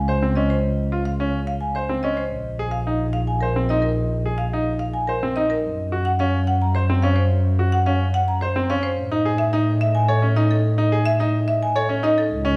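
This is classical minimalist pattern music in three, a hypnotic and bright passage cut from a longer piece. A marimba played with medium hard mallets carries the melody on padauk bars, its tone percussive and airy with a woody bite. A grand piano spins arpeggios in the middle register, sounding brilliant, polished and up front, with short sustain. Underneath, a single bowed double bass holds the low line with a warm, woody tone and light vibrato. The harmony moves from Dbmaj7(no3) through Bbsus4 and Gbmaj7(no3) before settling on A at 9.0 seconds. A wet recital hall reverb surrounds the trio, and all three parts play together for nearly the whole 12.6 seconds.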